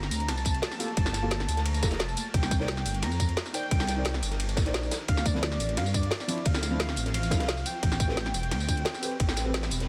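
Soulful, lush liquid drum and bass at 175 BPM in G minor, where a velvety sawtooth synth lead with chorus and dub echo carries the melody over a deep, rumbling detuned saw bass, up-front drums with a woody snare and metallic hats, a gritty, saturated breakbeat kit in the background, a tight electronic kick entering at 0.5 seconds, a shimmering, ethereal ambient pad holding sustained chords very quietly, and a felt-muted upright piano with audible action noise and delay joining at 0.8 seconds, all moving through Gm9, Cm9, Dm9 and Am9 in this short excerpt from a longer piece.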